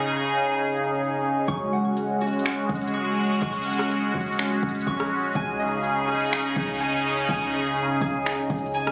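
Captured on a phone in the room with a light touch of studio reverb, this dreamy, floating cloud-rap excerpt in half-time opens on a sweeping, airy sawtooth pad, bright and up front, its detuned, resonant chords moving from C#sus2 to F#sus2 and back, thickened by chorus and pumping with sidechain. At 1.5 seconds a ringing, fingerpicked concert harp enters with delayed arpeggios, alongside a deep, boomy 808-style bass that sits mellow in the background. An electronic R&B kit of finger snaps, crisp hats, a soft kick and rim clicks also joins up front, gritty with overdrive.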